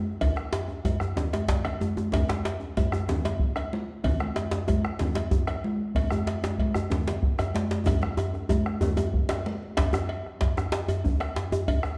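West African traditional drum ensemble music, driving and powerful, moves in a straight 12/8 at 126 BPM, with a deep, dark bombo up front, ringing high-tuned congas, and a close, dry metallic cowbell. Two djembes, both carrying metal rattles and played with soft hands, fill out the groove: one tight and cracking up front, the other warm, deep and vintage-sounding in the background. A drum fill at 7.9 s leads into a new section at 9.8 s, where the congas stop, all set in a reverberant recital hall in this excerpt cut from a longer piece.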